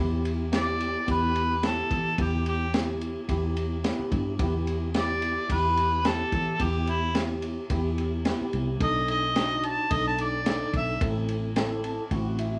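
A mellow, overdriven harmonica with light vibrato and scooped notes carries the soulful, mournful melody of this straight-eighth soul blues from 0.6 seconds, over a barky, clean tine electric piano that adds a fill at 11.6 seconds, a round, foam-muted fingered bass and a crunchy, saturated breakbeat kit with a punchy kick, high-tuned snare and dark ride cymbal, all in a light reverb as the chords move from Em to B7#9 and Am.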